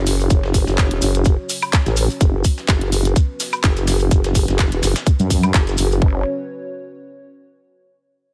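A swung sixteenth-note groove drives this bouncy, swaggering bass house clip, with a tight, up-front electronic kick, a layered garage kit of handclaps, hi-hat and woodblock, a very quiet gritty shaker and fat snare, and grainy acoustic maracas beneath a nasal, saturated vowel-sweep wobble bass and a moody, detuned analog pad that pump together in a digital ambience.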